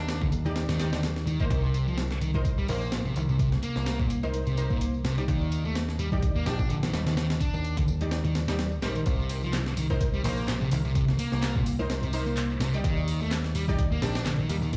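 Raw and energetic, this breakbeat cut swings along as a dark, fuzz-drenched electric guitar riff, soaked in tube saturation, 12-bit sampler grit, a low-pass filter and digital delay, sits up front beside a punchy picked electric bass, while a gritty, overdriven, compressed sampler-style kit with a thumpy kick and medium-tuned snare drives the groove. Behind them, an analog drum machine adds handclaps, hi-hat and tambourine, very quiet ringing congas sit close and dry, and a bold, detuned sawtooth orchestra-hit stab punctuates with fast, decaying bursts of reverb and delay. The chords move between Ebmaj7 and Cm7, a drop arrives at 9.1 seconds, and the whole thing sounds as if blasted through a big sound system in a bare stone room.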